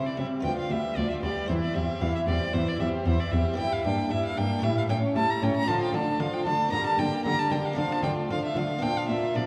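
Festive and lively, this short passage from a baroque-style concerto movement puts a rich solo violin with light vibrato up front on the melody, over a dark violin section in the background and a chamber violin section playing a smooth, reedy second line. A nasal viola section and a muted, lute-like buff-stop harpsichord fill in the accompaniment from the background, while a warm cello section holds the bass up front from 0.2 s to 9.4 s. Gut strings and period-style bowing shape the string sound, heard from further back in a wet scoring-stage space whose reverb lingers for about 1.9 seconds.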